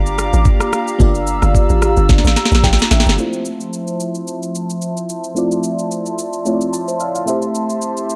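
Soulful and warm, this amapiano excerpt moves at 110 BPM in F major with a swung 16th-note feel, opening on a drop where a hollow, bouncy log drum bass sits up front until 3.2 seconds. A lush, dreamy FM electric piano with a soft pad layer carries the accompaniment through chorus and phaser, adding fills around 2.1 and 6.5 seconds. Meanwhile an airy, flute-like pad holds sustained chords with sidechain pumping, and a smooth R&B kit with a knocking kick, sharp snare, rim click and shaker drives the track, all in a dark production with light reverb.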